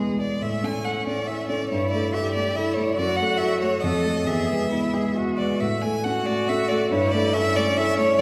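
Lively and spirited, this quick classical-period movement for piano trio in A major moves at 139 BPM in 3/4 with rubato and uneven beats, as an up-front clear violin carries the melody with smooth, even vibrato, a rich cello sings a bowed second line with expressive portamento, and a dark, mellow concert grand with deep bass and short sustain supplies a vintage-sounding accompaniment, the trio heard through the wet reverb of a church.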